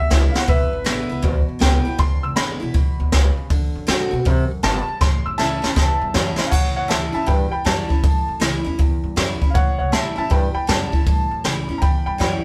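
Captured live in one room with light reverb, this rowdy, rollicking rockabilly passage, cut from a longer piece, swings as a clear, slightly detuned upright piano takes a solo through the first 6.5 seconds over a bright picked steel-string acoustic guitar with audible finger squeak, a thumpy gut-string upright bass plucked pizzicato, and a brushed drum kit with dark cymbals, a high-tuned snare and a boomy kick that drops fills at the start, from 5.0 to 6.5 seconds, and at 12.2 seconds.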